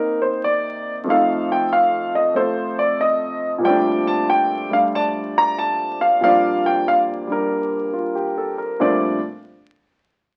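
Swung eighth notes in 4/4 carry this short solo jazz passage, cut from a longer piece, with a playful, warm mood. A grand piano, present and up front with long sustain, moves through Cm9 and F7 before settling on Bbmaj13, spanning F2 to Bb5, and falls silent at 9.2 seconds. Moderate reverb from a large studio surrounds it, and the sound carries the crackle of a very old 78 rpm record.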